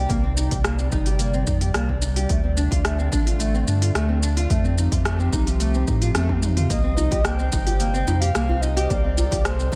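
Fingerpicked nylon-string guitar arpeggios, bathed in lush chorus, analog delay and shimmer reverb, float over a warbling, lo-fi tape-like pad and a deep, round sub bass that both pump with the sidechain in this earthy, mystical organic downtempo piece at 109 BPM in C dorian, carried by a punchy electronic kick and an electronic kit of smooth hats, rim click, shaker and toms whose fill at 6.2 seconds is followed by a breathy, flute-like synth lead at 6.7 seconds and a background djembe at 7.0 seconds.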